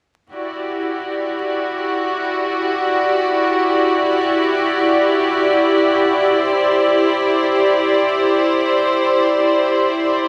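A bowed string section enters at 0.3 s, holding sustained Em9 chords up front with a reedy, gut-string tone and light vibrato in a period style, before moving to Cadd9/E at 6.4 s. This fragment, cut from a longer drum and bass piece, carries a frenetic, raw mood. A moderate plate reverb and vinyl crackle surround the ensemble, which plays on until 10.3 s.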